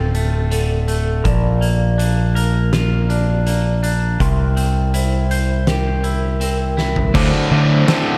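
Dark, small-room production opens this melancholic, cinematic post-rock fragment in D minor at 81 BPM, where a growling, overdriven bass sits up front beneath a boomy, gritty low-tuned drum kit with a fat snare and dark cymbals, a twangy, scooped clean guitar and a metallic, ringing vibraphone with fast motor vibrato trace delayed arpeggios, and a fingerpicked pedal steel adds sustained slide chords with volume swells over Dm7, Bbmaj7 and C7 until a drum fill at 6.8 s brings in two bright, overdriven guitar riffs at 7.1 s as the music returns to Dm7 at 7.2 s.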